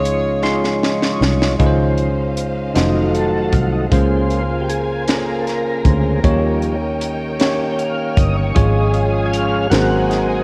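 A tonewheel organ with key click, a fast rotary speaker and chorus vibrato takes a smooth solo from 1.6 s in this jubilant, reverent slow gospel excerpt in 6/8 at 52 BPM in Db major, moving through rich chords such as Dbmaj9, F7b9 and Eb7. A tight, close-miked saxophone section with light vibrato states the melody only until 0.8 s. Beneath it, a bell-like tine electric piano, a round, dark fingered electric bass and a crisp fusion drum kit with a high-tuned snare and punchy kick carry the accompaniment, with the kit playing a fill from 0.4 s. They are joined at 1.6 s by a quieter bowed studio string section with expressive portamento, while the piano, organ, drums and strings carry a cassette-tape grain and a lush hall reverb surrounds this home recording.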